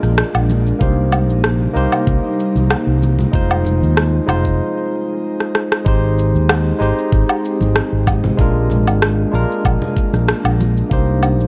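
A round, punchy fretless electric bass anchors this relaxed sunset chillout excerpt at 95 BPM with a gentle 16th-note swing, alongside a bright, barky tine electric piano through tape echo and shimmer reverb, an ethereal, detuned pad drifting in the background, up-front tape-warm electronic rim click, cabasa and woodblock, distant, very quiet congas, and a knocking electronic kick that enters at 0.8 s. A fingerpicked nylon-string guitar sounds only faintly on D5 before 0.5 s, and a break arrives at 4.6 s, capped by a drum fill at 5.4 s, over chords moving from Cm7 through Fm7 and Abmaj7 to Bb7.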